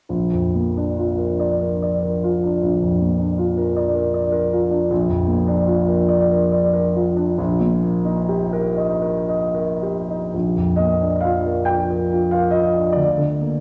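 A concert grand piano, up front with a deep bass and an open tone, plays a dreamy, serene romantic nocturne alone in Bb major, tuned to A4 = 445 Hz, at a slow, rubato 34-54 BPM in dotted quarters in 12/8; it moves from Bb to Eb/Bb before a new section begins at 10.3 seconds and settles on Bb/D, all bathed in a wet recital-hall reverb in this short passage cut from a longer piece.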